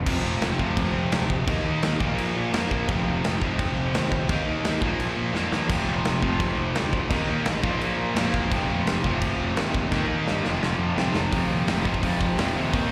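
Urgent and raw, this 170 BPM punk rock excerpt sounds like a live gig heard through a venue's PA, with a punchy, up-front big rock drum kit with bright cymbals alongside a growly fuzz picked electric bass, an overdriven electric guitar riff with slapback echo, a compressed, distorted guitar joining with its own slapback echo at 5.7 s, and a thick, double-tracked fuzz guitar, all cycling through F5, Eb5 and Bb5 power chords before drum fills at 5.3 s and 9.9 s lead into a short closing section at 11.3 s.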